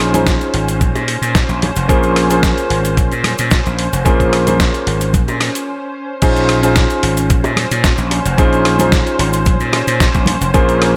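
A straight 4/4 nu-disco groove at 111 BPM in Bb minor, sensual and sleek, rides on a thumpy electronic kick and a dusty sampler-style kit with a fat snare, rim clicks, hi-hat and crash, while bright cabasa, congas and bongos sit in the background, an overdriven, punchy slap bass sits up front, a warm grand piano with digital delay and veiled, con sordino strings both pump to the sidechain over Bbm11 and Bbm9/F chords, and a short break at 5.7 seconds gives way to a drop at 6.2 seconds in this fragment cut from a longer piece.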